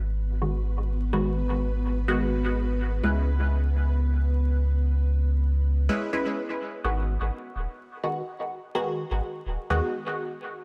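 Cavernous and nocturnal, this short cut from a longer techno piece moves at 126 BPM in a straight 4/4, set in G# minor. A round, mellow sine sub bass sits deep and up front from the start, holding sustained low notes until 9.8 seconds. Above it, a bubbling, resonant sawtooth texture steps through random filter changes, its detuned tone smeared by chorus and its own reverb before it drops out at 5.9 seconds, opening a brief break. Filtered dub chord stabs enter at 0.4 seconds, muted yet bright, blending detuned sawtooth and square waves into a decaying filter pluck coloured by phaser and dub echo. The harmony moves from G#m7 to C#m7 and back to G#m7, all captured in a dry, gritty hardware recording with a digital ambience and a layer of vinyl crackle.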